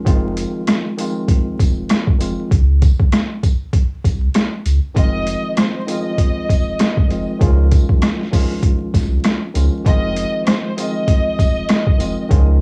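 A dry, lo-fi home cassette sound with vinyl crackle and studio ambience frames this short, gritty boom-bap hip-hop cut from a longer piece, moving at 98 BPM in F minor with a swung sixteenth-note feel and a dark mood. The sampler-style drum kit sits up front, compressed, pitched down and overdriven, with a thumpy kick, high-tuned snare, rim click and hi-hat, while a jingly acoustic tambourine rings in the background. Underneath, a deep, thick sub bass with a triangle-like tone and transformer saturation holds sustained, mellow notes, and a worn, slightly out-of-tune tine electric piano plays accompaniment through what sounds like built-in speakers, lightly overdriven and filtered. The harmony rests on Fm7, breaks to a chordless stretch at 2.5 seconds, then returns and moves to Dbadd9 before settling back on Fm7. At 5.0 seconds a smooth, bowed violin section enters with the melody, its ensemble tone carrying gentle vibrato and a tape echo.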